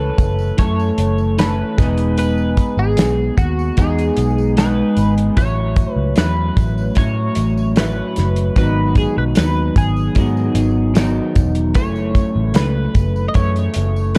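A slightly broken-up electric guitar through a small old amp, soaked in lush chorus and vibrato, opens this dreamy, hazy bedroom pop piece alongside a round, foam-muted picked bass and a bright, twangy twelve-string electric guitar carrying the melody through analog chorus and delay. Almost at once, at 0.2 seconds, a cloth-damped, thuddy drum kit with a tight kick and rolled-off top joins up front, while a jingly tambourine sits in the background. The dark production has light reverb and small room ambience, and the chords move through F#m7, Emaj7, A6 and G#m7 before returning to F#m7 at 11.8 seconds.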